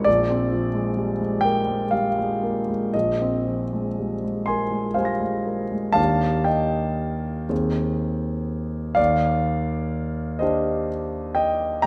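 Swaying in a lilting 6/8 with uneven, rubato beats, this short passage cut from a longer impressionist solo piano work drifts at a slow, unhurried pace. A single concert grand carries everything. It is heard up front and intimately close, with deep bass, a polished tone, long sustain and the audible mechanical noise of its action. Its register spans from Bb1 in the bass to Bb6 at the top. The opening phrase rests on a Bb9 sonority. At 6.0 seconds a second phrase begins, moving through Ebmaj9, Abmaj7/Eb and Cmadd9/Eb over an Eb in the bass. A moderate concert-hall reverb lets the luminous harmonies bloom, leaving a serene, glowing mood.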